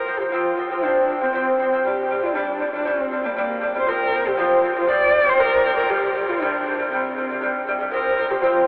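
A husky, dark horsehead fiddle carries a vast, proud Mongolian folk melody with vibrato and portamento, while a bright, delicate fingerpicked lute with double gut strings plays arpeggios beneath it, both up front yet bathed in a huge, wet ambient reverb with a thin telephone-like sound heard from further back in the room, in this short fragment cut from a longer piece.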